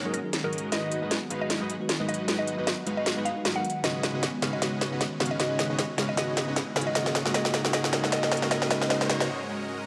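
Lush and euphoric, this future bass passage moves at 154 BPM in a half-time feel with a light swing on the sixteenths, and it is cut from a longer piece. The whole stretch works as a build-up over a drum fill, with a trap kit of sharp snare and crisp hats sitting up front. A huge, thick, compressed supersaw plays a riff while a woody, round synth pluck carries the melody through chorus, phaser, tape colouring and dub echo. A bell-like tine electric piano adds clean accompaniment, an airy, breathy pad holds soft sustained chords in the background, and a deep, boomy 808-style bass is barely audible beneath. The chords move from F#69 to G#m7, C#9sus4 and D#m11, a very quiet riser enters at 5.9 s, and at 9.3 s a brief break leaves the supersaw ringing alone into a lush hall reverb.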